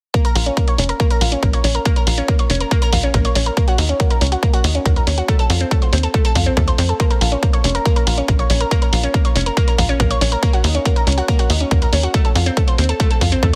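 A bright, detuned analog pluck leads this cut from a longer uplifting trance piece, playing arpeggios through chorus, delay and sidechain pumping, its filter sweep and moving notch coloring a Bbm, Ebm7 and F progression in Bb harmonic minor at 140 BPM in straight 4/4, tuned to A4 = 441 Hz. A punchy, layered electronic kick drum sits up front beside a tight, driving sawtooth sequencer bass with sidechain pumping that enters at 0.4 seconds, while a dry electronic hi-hat, also pumping, sits lower in the mix. The mood is euphoric and soaring, set in a digital ambience with a heavily compressed, radio-like sound.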